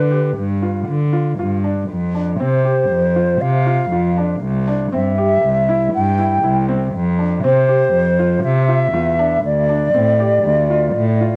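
From the first moment, a hollow silver flute, a felt-muted upright piano and a dark bowed cello sound together in this restless, urgent piece of contemporary chamber music, cut from a longer work and set in an uneven 5/4 metre with a straight feel. The flute carries the melody up front, its pure, mellow tone close-miked and tongued with vibrato, given a faint haze by cassette tape, plate reverb and tape echo. Beneath it, the upright piano plays soft, intimate arpeggios in its middle register, its thin felt muting lending a hushed quality under the same cassette colour. The cello holds the bass with one player bowing sul tasto, producing a soft attack and a smooth, floating top that sits close to the listener. The harmony moves from an open G7 through F5 and C, returns to F5 and then arrives at D minor, all within a small booth whose short, modest ambience suits the homemade cassette character of the recording.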